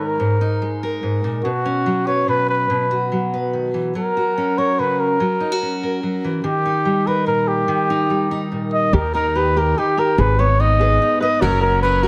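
In a straight 3/4 at 144 BPM, this short indie folk passage, cut from a longer piece, carries a yearning, stirring mood in an arrangement that builds as it goes. A mellow, close-miked trumpet plays the solo melody up front in a classical style, touched by slapback echo. Beneath it, a fingerpicked steel-string dreadnought guitar sits warm and forward. At 8.9 seconds a pizzicato upright bass enters up front, woody and thumpy, along with a light, thumb-plucked ukulele playing arpeggios in the background. At 11.4 seconds the fingerpicked guitar stops and a picked, plugged-in twelve-string parlour guitar takes over, bright and boxy with a shimmering, octave-doubled ring, as the chords move from G#sus2 and Bsus2 through F#, D# and G#m before returning to F#, all within a moderate echo chamber reverb and small room ambience.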